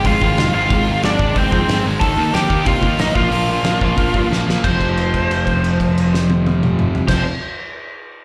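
A rowdy, energetic punk rock excerpt at 182 BPM in straight 4/4 opens with the whole band at once, captured as a live gig heard through the venue's PA with a light club reverb. Up front, a biting lead guitar carries the melody between C4 and A5, its bright overdriven tone thickened by slapback and tape echo. Behind it, two picked, compressed guitars share the riff from F2 to Eb4: one bright and distorted with slapback echo, the other warmer and overdriven with the same slapback. A growly fuzz bass, direct and amped with bright overdrive, digs in underneath, while a loose indie drum kit sits close with a punchy kick, fat snare, dark cymbals, toms and hi-hat in a pumping, gritty, saturated room sound with a rolled-off top. The chords move from Ab to Eb, then Bb5 at 3.2 seconds, and a drum fill at 4.3 seconds launches a new section on F5 at 4.6 seconds, where a held note rings out until 7.1 seconds as the cut ends.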